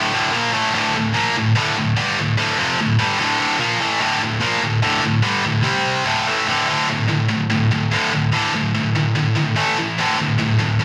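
Aggressive and epic, this brief metal excerpt in D minor at 146 BPM features a lone heavy high-gain electric guitar, bright, distorted, picked and double-tracked up front, playing alone from 0.0 to 10.8 seconds through Dm, C5, D5 and A5 chords, with a moderate large-studio reverb and a live-room feel.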